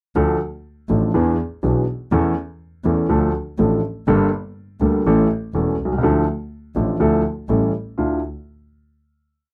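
Tango, melancholic and dramatic, moving with a rubato feel in 4/4 over a short, complete piece. An upright piano carries the accompaniment from 0.2 seconds, its warm, woody tone sitting up front with long sustain and a natural character as it plays a milonga rhythm across a range reaching down to E1. A single bowed double bass plays alongside it over the same span, clear and focused with vibrato, holding the low register in the same milonga rhythm. The harmony moves through Dm, E7, A/E, Gmadd9 and A7 before settling on a closing Dmadd9 chord that rings from 8.0 seconds to the end. The sound is dry and close, with little reverb, in the manner of a 1970s studio recording.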